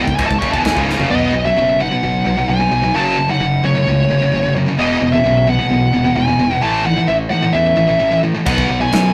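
Epic and aggressive, this heavy metal excerpt drives at 131 BPM in a straight 4/4. A warm, high-gain lead guitar carries the melody over two picked, distorted rhythm guitars, one up front and one in the background, while a growling, overdriven fingered bass supports them through C#m, B, F#m, E and A before landing on B5. A polished studio drum kit with bright cymbals, china and crash cymbals and a tight kick plays a fill in the opening second alongside a very quiet double-tracked distorted guitar; both drop out until 8.5 s and then return together. From 1.1 s a dark, bluesy overdriven lead guitar adds a faint second line, all within a rough rehearsal-room sound with tube saturation and light reverb.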